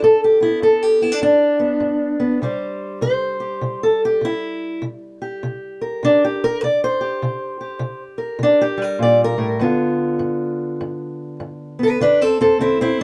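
Close, detailed miking and a moderate studio reverb frame this rollicking, soulful acoustic country blues excerpt, where a lone fingerpicked steel-string parlour guitar, boxy and up front, swings through G, C7, C5 and G7 before landing on a D7sus2 at 12.0 seconds.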